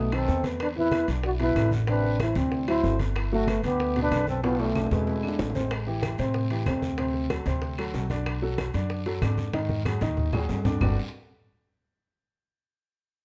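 A straight 4/4 groove at 188 BPM drives this danceable, sophisticated Afro-Cuban jazz in G major, where a breathy, whispered trombone with tape echo carries the melody up front over an airy, distant silver concert flute line until both stop at 5.6 s, while a baby grand piano with audible action noise, a growly pizzicato upright bass, low-tuned congas, ringing timbales, tight, very quiet bongos, woody claves and a raspy guiro carry on to the end in a dark production with light reverb.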